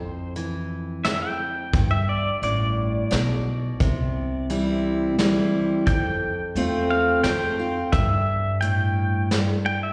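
Honky-tonk and classic country in a straight 3/4 at 87 BPM, this down-home, sunny excerpt from a longer piece features a bright, twangy pedal steel guitar soloing up front with fingerpicks, slide, volume swells and slapback echo over a picked steel-string acoustic guitar moving through F, G, C and Emadd11/G. An upright bass supplies woody, thumpy pizzicato, and a vintage brush drum kit with a tight kick and rolled-off top enters at 0.4 seconds. The performance sounds like a live gig heard through the venue's PA, set in recital hall reverb.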